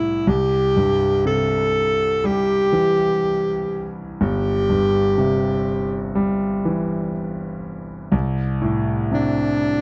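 An up-front alto saxophone carries the melody in a heartfelt, tender pop piece at a slow 61 BPM in C major, its clear tone shaped by light vibrato, soft attacks and scooped, jazz-inflected notes. A concert grand piano accompanies in its lower register with smooth, vintage character and deep bass, moving from C to D5/C at 8.1 seconds. The close, dry 1970s-style studio sound carries a touch of light reverb, and this brief passage, tuned to A4 = 441 Hz, is cut from a longer piece.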